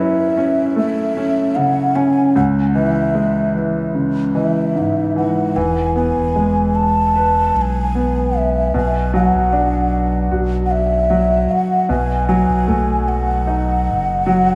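A breathy, hollow bansuri carries the vibrato-laced melody up front through analog delay over a clear grand piano in this melancholic, emotional pop ballad at 76 BPM, moving from F#m7 and C#m toward E, Bm and B7, with a deep sine sub bass with octave entering at 5.6 s, all soaked in a lush, dreamy hall reverb.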